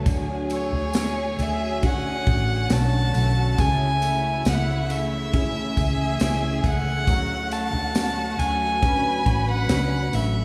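A slow, straight 4/4 pulse comes from a natural country drum kit with a punchy kick, high-tuned snare and ride cymbal, set in the background beside a jingly, dry tambourine, while a dark, round, foam-muted fingered electric bass sits up front. This tender, heartfelt pop ballad moves from Dmaj7 to Amaj7/C# and back to Dmaj7. A clear concert grand piano with ensemble chorus provides the accompaniment, and a direct-recorded clean electric guitar, compressed and scooped with analog chorus, plays arpeggios. An ethereal pad of detuned sawtooth and triangle voices, with a slow attack, moving notch and built-in reverb, holds sustained chords underneath. A lush symphonic violin section with soft attack and vibrato carries a second line, and from 0.5 seconds a single close, bowed violin with smooth vibrato and analog delay takes the melody up front. A moderate plate reverb soaks the mix in a dreamy haze, and this excerpt is cut from a longer piece.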